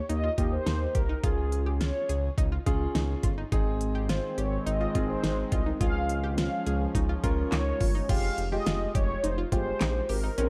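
Melancholic and nocturnal, this synth-pop excerpt moves at 105 BPM in F minor, with a mellow, brassy synth lead carrying the melody over chorus and slapback echo while a round analog pluck sketches arpeggios in the background. An up-front pop drum kit with a knocking kick, fat snare, crisp hats, handclaps and crash plays alongside a smooth sawtooth bass and an intimate concert grand piano whose action noise is audible, and a bright, evolving resonant pad swells in between 3.5 and 8.1 seconds. The production is dark, with light reverb and a digital ambience, and the harmony settles on Fmadd9 at 8.1 seconds.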